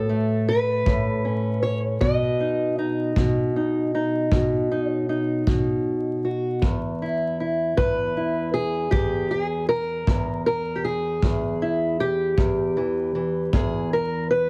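A dark, boxy fingerpicked steel-string parlour guitar sits up front and carries the melody across its whole range in this laid-back, swaggering acoustic country blues cut, moving from A to B and settling on E at 6.6 seconds. A distant, punchy kick drum with brushes joins at 0.9 seconds at a slow 52 BPM in a straight 12/8. The whole cut has a heavily compressed, radio-like sound with vinyl crackle and a moderate studio reverb, and its two passes through the same section are taken from a longer piece.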